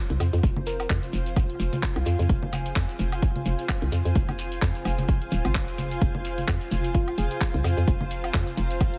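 Light reverb and digital ambience frame this sparse, hypnotic minimal techno excerpt in F minor at 129 BPM, with a swung 4/4 groove resting on a single Fm chord. An up-front, punchy electronic kick enters at 0.4 seconds beside a hollow, bouncy FM bass with sidechain pumping, while a tape-warm house kit of handclaps and hi-hat, layered electronic congas and woodblock, and a grainy, mellow shekere tucked in the background fill out the rhythm. Above them a cloudy, evolving granular pad drifts with its own reverb and pumping, and a round, gentle keys-like lead appears only in brief touches at 0.7 and 6.9 seconds, coloured by chorus, 12-bit sampler grit and dub echo.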